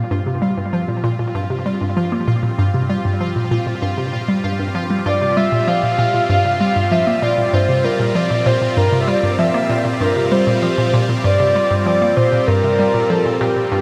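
A hollow, bouncy square-wave pluck sits up front with a warbling, vintage chorus-and-delay sheen, carrying a riff through this mysterious, cosmic excerpt of sequencer-driven space music at 97 BPM in G minor, resting on a G minor chord. Beneath it, an evolving wavetable pad fades in with morphing, detuned chords through a phaser, while a pulsing, tempo-synced gated texture holds a bright F4 shimmer. At 5.1 s a breathy, flute-like synth lead enters with soft vibrato and a cassette-tape wobble, all suspended in an enormous, wet reverb.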